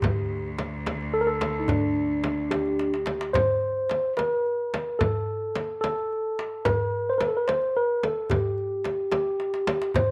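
A steady 6/8 pulse at 73 BPM from a clay-shell darbuka and a close, dry frame drum, with fills at 2.8 and 9.4 seconds, carries this longing, soulful Arabic maqam ensemble excerpt in D hijaz, where an up-front, mellow tine electric piano sings the melody in a wet spring-reverb haze while a clear, bowed cello drone with vibrato sustains beneath it until 3.4 seconds.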